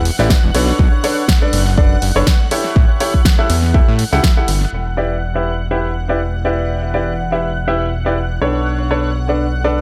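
An echo-heavy mix with light reverb frames this bittersweet, energetic piano house excerpt, where a bright, intimate baby grand piano with audible action noise plays a riff through a low-pass filter, analog delay and sidechain pumping, a fat, saturated sawtooth bass pumps up front, a silky, detuned string pad with ensemble chorus and phaser sustains high chords over Em7, Bm9 and A7, and a layered, punchy electronic kick and snare with filtered hi-hats carry the groove until the kick stops at 4.3 s and the hi-hats and snare at 4.6 s.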